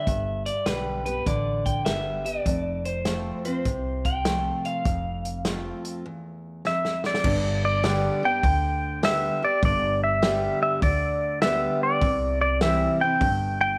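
Honky-tonk and classic country in a down-home, heartfelt mood at 100 BPM with a swung 4/4 feel in G mixolydian, where a bright, twangy electric guitar through a small old amp takes a slightly broken-up solo with tape echo over picked full-bodied dreadnought acoustic guitar, thumpy woody upright bass and a natural drum kit with a punchy kick, until a drum fill at 6.7 seconds hands the lead to an up-front, clean, compressed pedal steel guitar with volume swells and slide, joined at 7.8 seconds by a very quiet, mellow dark grand piano in a light small-room ambience, all cut from a longer piece.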